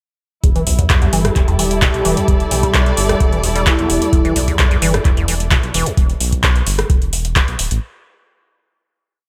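A dry, close-sounding acid house track with a driving, trippy mood, built on an overdriven four-on-the-floor electronic kick and an up-front electro analog drum machine of metallic hats, claps and rim clicks, both re-recorded in a large room, beneath a squelchy, resonant liquid acid bass line with accents and slides, a sweeping filter, phaser, overdrive, cassette-tape color and dub echo, alongside a round, deep syncopated analog bass riff, a smooth, detuned, chorused analog pad holding a high note and a distant, dark chamber string section with vibrato, with both basses, the pad and the strings pumping to the sidechain, while a ringing vibraphone with medium mallets enters at 2.5 seconds for brief tape-echoed phrases; the pad, strings and acid bass fall away around 6.0 seconds, and the drum machine and round bass run on to 7.8 seconds.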